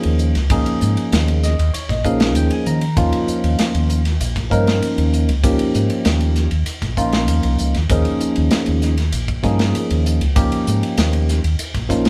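A barky tine electric piano sits up front in this soaring, bright electric jazz fusion passage, lightly overdriven through a combo amp and colored by a phaser. It carries the accompaniment across the whole clip and plays a fill between 1.1 and 3.0 seconds, with the harmony resting on an Eb9sus4 chord. Beneath it, a deep, dark, round fingered electric bass enters at 0.1 seconds with a direct, amped tone. The acoustic studio drum kit is mid-forward and up front, with a punchy kick, a medium-tuned snare, hi-hat and ride cymbal, and a rolled-off top end. The band plays live together in one room in a straight 4/4, wrapped in a moderate studio reverb, and the recording is cut from a longer piece.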